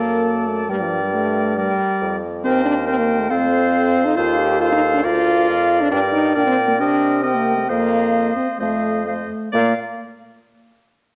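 Heard in a wet recital hall with a 1.5-second reverb, this spirited, cheerful excerpt from a quick classical-period wind quintet movement runs at 125-142 BPM in 4/4 with a rubato feel, tuned to A4 = 436 Hz: a hollow, airy silver flute with vibrato carries the melody, a bright oboe with light vibrato sings a second line, an up-front, dark French horn and a warm clarinet set in the background supply accompaniment, and a distant, roomy bassoon anchors the bass through chords such as Gm, Cm7 and F7sus4 before the five instruments fall silent by 9.8 seconds.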